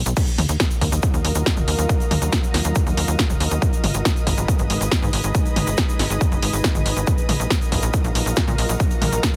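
A dry, heavily compressed, radio-like mix carries this euphoric, driving uplifting trance piece in Eb minor at 139 BPM, where an up-front, tape-warm electronic kick and a punchy analog drum machine with an overdriven snare, hi-hat, toms and crash pound alongside a nasal, sawtooth sequencer bass with sidechain pumping, a grainy, bright tube shaker, and a shimmering, detuned ambient pad with chorus that enters at 0.8 seconds to sustain chords moving from Ebmadd9 to Abm and back to Ebmadd9/Bb.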